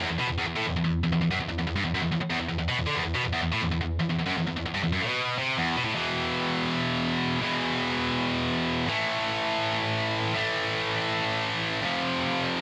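A straight 4/4 pulse at 163 BPM drives this short, dark and epic metal fragment, tuned slightly sharp to A4 = 441 Hz, where a lone electric guitar plays throughout its 12.6 seconds. The picked, double-tracked guitar sits up front with a bright, scooped, high-gain distorted tone, ranging from E2 to A3 and grinding on an E5 power chord before moving to A5 at 8.9 seconds and F5 at 11.8 seconds. A light reverb gives the part a touch of space as the riff shifts into a second section at 5.9 seconds.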